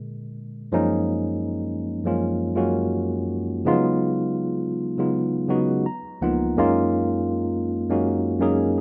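A worn, slightly out-of-tune tine electric piano plays alone and up front in this soulful, smooth R&B excerpt at 82 BPM with a 16th-note swing, moving from A#7 through F#maj7, C#9sus4 and C#13 back to F#maj7 in F# major, with a fill from 5.5 to 6.6 seconds, all set in light digital reverb within a rough home demo mix.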